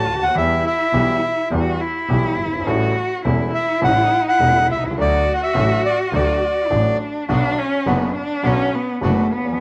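A rubato 4/4 tango at 104 BPM, this nostalgic, elegant piece in D major opens with a reedy, boxy bandoneon carrying the melody up front over a warm, bowed cello second line full of vibrato and portamento. A grand piano with long sustain and a smooth, clear bowed double bass support them through Em, A7 and D, all in light studio reverb. The bandoneon melody stops at 7.0 s, and from 7.3 s the expressive cello takes a solo over Bm while a dark, airy bandoneon adds stabs.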